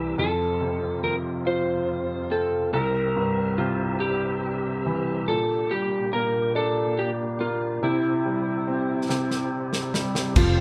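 An up-front electric slide guitar carries the melody in this tender, heartfelt six-eight pop ballad, its tone slightly broken-up and sung through fingered slide lines at a slow 47 BPM counted in dotted quarters. Beneath it, a clear, woody upright piano plays the accompaniment, sounding worn and slightly detuned with a long sustain, while a clean tonewheel organ holds sustained chords in the background, colored by chorus vibrato, key click and a fast rotary speaker. The harmony moves through F, C, Gm/Bb and C, and the whole band sounds as if playing live in one room under a moderate studio reverb. At 9.1 seconds a loose, small-room indie drum kit enters up front with a fill of crash, tight kick and medium-tuned snare, its top end rolled off. At 10.4 seconds, just as this brief cut from a longer piece ends, a full-bodied picked dreadnought acoustic guitar arrives with arpeggios and audible finger squeak, joined by a dark, round and punchy fretless electric bass.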